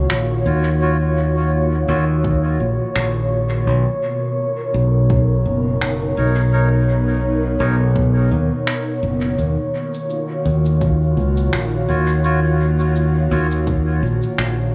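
Swung sixteenths in 4/4 set a loping groove for this hazy, deep ambient dub fragment, with overdriven electronic finger snaps and shaker trailing dub echo from the start and a layered, overdriven electronic kick arriving at 2.2 seconds. A growly, up-front fingered electric bass anchors the low end beneath an airy, breathy pad of sustained, chorused chords with a slow attack and long release. Reedy, nasal melodica stabs, close-miked and dry at the source but sent through dub echo, float in from 0.5 seconds, all set in an echo-heavy mix with light studio reverb.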